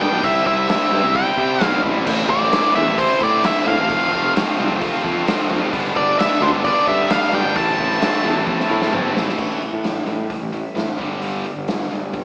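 Quiet-loud alternative rock in A minor at 131 BPM, brooding and dark, this excerpt sets an up-front, fuzzy octave-fuzz lead guitar melody over double-tracked distorted rhythm guitars, one of them overdriven with slapback echo, a growly fingered fuzz bass and a punchy, saturated garage drum kit in a bright stone room, moving through C, Am, F and G until a drum fill at 8.5 seconds leads at 9.4 seconds into a very quiet, twangy twelve-string guitar playing clean arpeggios over Am7 and G5 alongside the continuing bass, drums and tight rhythm guitar, all bathed in a lush hall reverb with a big arena sound.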